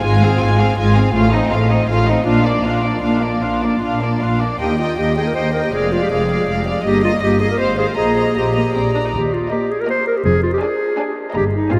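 Bathed in the long, wet echo of a vast cathedral-like space, this spirited, cheerful classical-period movement for symphony orchestra moves in a quick, rubato triple metre. Two violin sections carry a pure, floating melody and a second line above viola and cello sections bowing sul tasto with soft attacks and vibrato, the cellos sitting in the background, while the double basses anchor the low end. At 4.6 seconds a close-miked, up-front solo clarinet joins with its own second line for the rest of this short passage cut from a longer piece.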